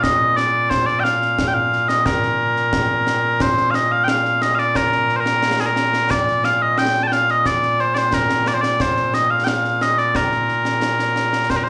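Scottish traditional pipe music in a proud, ceremonial mood, this 2/4 excerpt features mellow small bagpipes carrying a sweet, continuous solo melody up front, colored by a slapback echo. Concert snare and bass drum with bright cymbals sit further back in the live room, also touched by slapback echo, and play throughout. Heard through a venue's PA with moderate club reverb and a muffled top end, the tune moves from its opening strain into a new one at 3.4 seconds.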